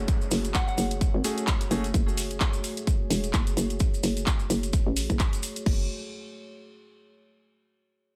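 A hollow, knocking FM bass sits up front with tube saturation and a filter sweep, pumping against a punchy, tape-warm electronic kick in this gritty, bouncy bass house excerpt at 129 BPM in F# minor, swung on the 16ths and opening on an F#madd9 chord. A dark, detuned analog pad holds sustained chords until 5.9 seconds, while piano stabs with delay and a very quiet downlifter drop out at 1.9 seconds, and a soft, pure synth bell with phaser and chorus touches a single F#5 note at 0.5 seconds. Layered garage drums with crash, handclaps and hi-hat join grainy, mellow maracas, with studio reverb on the drums and a dry mix overall.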